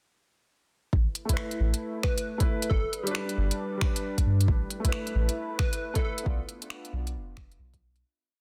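This is a short, complete future garage piece at 135 BPM with a 16th-note swing, carrying a rainy, melancholic mood over chords moving from Asus2 to Gadd9 and back before settling on Bdim. The groove starts at 0.9 seconds with a muffled, overdriven two-step kick sitting up front beside a deep, round dub sub bass that pumps under sidechain compression. A skittering, shuffled electronic kit of smooth closed hats and finger snaps joins shortly after, with soft clipping on its snare and a small room ambience shared with the kick. A warbling, lo-fi tape-like pad of slow-attack sustained chords drifts underneath with chorus and its own reverb, while a felt-muted upright piano adds sparse, mellow, intimate chord stabs in a spread voicing, treated with dub echo. From 2.0 seconds a punchy, detuned unison lead with a filter sweep, phaser and tape echo plays short, catchy phrases until 6.1 seconds, as the whole piece fades out from 5.7 seconds into a dense, heavily limited modern master with light digital ambience.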